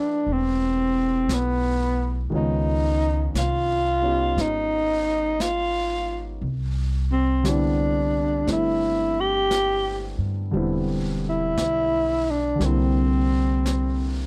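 A slow 58 BPM swing in 4/4 carries this tender, late-night jazz ballad in C major, with a vintage brush drum kit softly brushing the snare and hi-hat and a woody, thumpy upright bass in gut strings, both joining at 0.3 seconds. Up front, a growling tenor saxophone sings the melody with breathy subtone, rasp and scooped notes, touched by a slapback echo, while a smooth grand piano with long sustain comps through chords like Am9, Db9 and Cmaj9. The dry, close sound of a 1970s-style studio frames this short cut from a longer piece.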